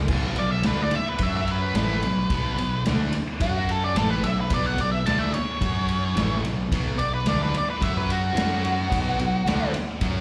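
Blues rock power trio with a southern rock lean, this gritty, smoky excerpt in B minor at 109 BPM sets a double-tracked, up-front fuzz rhythm guitar's riff and a growly overdriven fingered bass over a raw garage drum kit with a punchy kick and a saturated, rolled-off top, while a dark octave-fuzz lead guitar carries a solo with slapback echo and digital delay from 0.4 seconds, all heard as a live club gig through the venue's PA with light reverb, moving between Bm and F#5.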